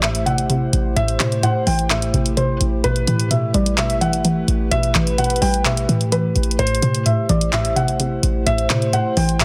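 A dark, melancholic half-time trap passage opens with its full arrangement at once: a soft, felt-muted upright piano carries the melody with audible action noise, low-pass filtering and tape echo, while a velvety synth lead with vibrato sits in the background on a second line. Beneath them, a hollow, bouncy square pluck, a deep, moody analog pad with slow-attack sustained chords, a punchy, tight 808-style bass and a trap kit of handclaps and bright hi-hats fill out the groove over Am7 and Em/A. The light reverb and dense, heavily limited master keep the sound full.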